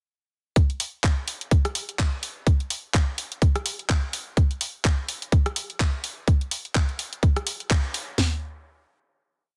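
A tight, up-front electronic garage drum kit drives this short, aggressive and bouncy house piece at 126 BPM in 4/4, with a four-on-the-floor kick, cracking snare, open hat and floor tom, all swung at 57% on the 16ths. A second, quieter layered kit adds programmed closed and open hats, rim clicks, handclaps and a backbeat, with bright hats and a soft-clipped snare edge. The drop runs from 0.6 seconds, with an accent at 7.7 seconds and a final hit at 8.2 seconds, all set in a digital ambience with a dense, heavily limited modern master.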